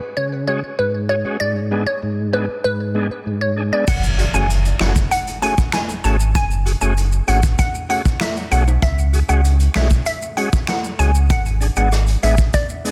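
Dancehall at 97 BPM in F# minor, this hypnotic, sultry excerpt from a longer piece opens with a glassy wavetable pluck carrying the melody over an overdriven tonewheel organ. The pluck is crystalline and slightly nasal, with a fast attack, short decay, a filter sweep, and chorus and delay, while the organ sounds thick and gritty, with key click and a fast rotary speaker. At 3.9 seconds the groove arrives: a deep, full sub bass with octave sits up front beside a vintage brush drum kit with a punchy kick, medium-tuned snare, rim click, finger snaps, hi-hat and crash, its top rolled off. Maracas and timbales sit close but in the background, and an electronic impact sounds behind the entry until 6.4 seconds. The harmony moves from C#sus4 and G#dim to a long F#madd9 before returning, all within a dense, heavily limited modern master.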